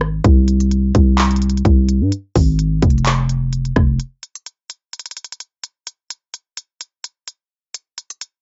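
This fragment has the dry, close sound of a home cassette recording, its top end rolled off above 7.7 kHz and almost untouched by reverb. It is an eerie, dark piece of trap-style hip hop at 128 BPM in 4/4, moving with a half-time feel and tuned to A at 441 Hz. An electronic trap drum kit sits up front throughout, its hard-clipped kick, crisp hi-hats, handclaps and rim clicks carrying a tape-softened grain. For the first 4.0 seconds a growling 808-style bass shares the foreground, a buzzy sine tone with a fast attack and a decaying tail that moves between F1 and G2. The bass then stops, and the drums play alone until 8.3 seconds, leaving the bare kit to close out the passage.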